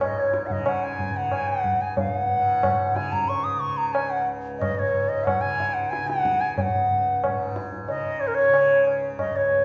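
Hindustani classical music in a meditative, devotional mood and a seven-beat cycle, cut from a longer piece, where a bright, reedy bansuri carries the airy, tongued melody with vibrato up front over a buzzing, shimmering tanpura drone and high-tuned, ringing tabla with a vintage, band-limited tone, all bathed in the wet reverb of a recital hall across its 9.6 seconds.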